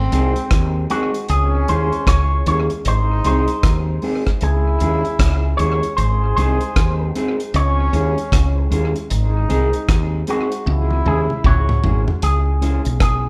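Laid-back and meditative, this short roots reggae passage, cut from a longer piece, settles into an unhurried 4/4 with a lilting swing, rocking between G# and C# minor. A woody fretless electric bass sits up front with a round, punchy, hollow-body tone, while the deep reggae drum kit, dry and tight in the kick with a rolled-off top, works hi-hat, rim clicks, kick and toms before a drum fill from 10.7 to 12.2 seconds. A mellow electric guitar supplies dark, clean, fingered accompaniment trailed by tape echo. From 0.9 seconds, an electric guitar with an envelope filter carries the melody in a bright, twangy, scooped and compressed voice, picked cleanly. A brilliant trombone adds a second line with vibrato and a close-miked, pop-style punch, dropping out at 11.8 seconds. The band plays live in one large studio room, with moderate reverb giving the ensemble a shared sense of space.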